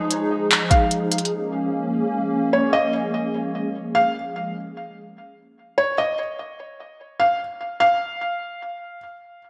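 A half-time hip hop groove marks the start of this dreamy, floating cloud-rap fragment, with a soft, tape-warm electronic kit of kick, smooth hi-hat and handclaps that sounds up front and sits in gated reverb before it stops at 1.3 s. A hollow, flute-like pad of detuned, warbling square, triangle and sine tones holds sustained chords through ensemble chorus and sidechain pumping until 4.5 s, while a felt-muted upright piano carries an intimate, mellow delayed melody, its action noise audible, until 9.0 s. A lush digital hall reverb and bright 1980s-style production wash over the whole piece.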